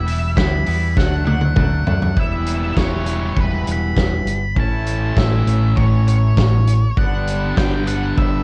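A bright, overdriven, double-tracked stack guitar sits up front in this carefree, jangly indie rock excerpt, picking a riff over a straight 4/4 groove. Beneath it, a fingered electric bass adds a dark, round low end with a punchy edge. A loose, roomy acoustic drum kit with a fat snare and a punchy kick plays hi-hat, kick, snare and toms, and rolls through a fill from 1.0 seconds into the second section at 2.2 seconds. High above, a quieter octave-fuzz lead guitar picks a dark, distorted melody. The harmony moves from Em7 and D to Em, A and G, and the guitars and drums carry a cassette-tape grain in a dry home recording.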